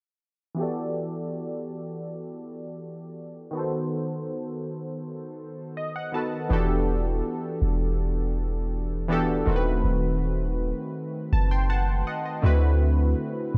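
Detuned, sawtooth-edged analog keys stand out first in this longing, late-night R&B passage in E minor. They sit up front, round and coated in chorus, with a fast attack and decaying notes, while a filter sweep moves across them through the opening. At a straight 81 BPM in 4/4, the keys move from Em11 to B7b9/D# twice before settling on a final D13, adding short fills along the way, the first at 5.4 s. At 6.5 s a clean 808-style bass arrives, deep, boomy and sine-pure, with a fast attack and a decaying tail that sits up front under the chords. The production is dark and low-pass filtered with light reverb, giving this excerpt, cut from a longer piece, a hushed, intimate glow.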